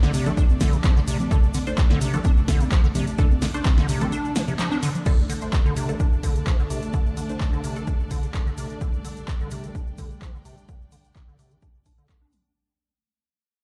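A straight 4/4 pulse drives this hypnotic, gritty acid house cut, with an up-front, tape-warm electronic kick and a punchy analog drum machine supplying snare, handclaps, hi-hat, congas and crash cymbal, while a grainy egg shaker sits in the background. A squelchy, resonant square-wave acid bass riff pumps against the kick through chorus and tape echo, lush bowed strings with vibrato shimmer overhead, and muted, wave-folded dub chord stabs flicker through a phaser and echo until 7.9 seconds. After a short break from 4.1 seconds, a detuned sawtooth pad enters at 5.1 seconds as filter sweeps move across the bass and pad during the fade-out, all heard as if played over a big sound system in a bare room, with large studio reverb and lossy compression artefacts.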